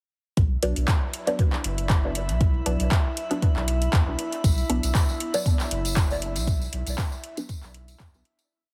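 A four-on-the-floor electronic kick, deep and up front with a small-room tint, drives this short, complete dub techno piece at a lightly swung 4/4. Programmed handclaps on the backbeat and metallic closed hats from a deep house kit sit further back, overdriven and splashed with dub echo. A soft, round sub bass plays a syncopated riff that pumps against the kick, while sparse, muted chord stabs move one dark sawtooth shape in parallel through a phaser, a moving notch filter and echo. High above, a glassy sine texture holds a calm, drifting note, thickened by chorus and reverb and breathing with the same pumping. A jingly, close and dry tambourine joins at 4.4 seconds with hand-played sixteenths, shortly before the hazy groove begins its fade at 5.8 seconds, and the whole track carries a heavily compressed, radio-like sound.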